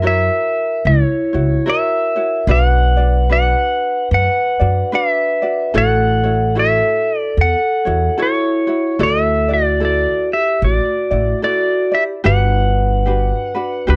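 A languid, relaxed Hawaiian piece opens with pedal steel guitar, ukulele and upright bass sounding together, with the vibraphone joining a moment later at 0.1 seconds. The electric pedal steel carries the melody up front, bright, twangy and compressed, played with fingerpicks and slide and shaped by volume swells. Beneath it, the upright bass is plucked pizzicato on steel strings, woody and growly and also placed forward, while a mellow, fingerpicked acoustic ukulele supplies light accompaniment. The vibraphone, struck with medium mallets with its motor off, adds a metallic, ringing second line that has a vintage, band-limited character. At a gentle 74 BPM in D major with a swung eighth-note feel, the harmony moves from F#7 through Bm, A6 and Dadd9 before shifting to Gmaj7 at 12.2 seconds. The sound is dry and close, with a small room ambience that recalls a 1970s studio, and the excerpt is cut from a longer piece.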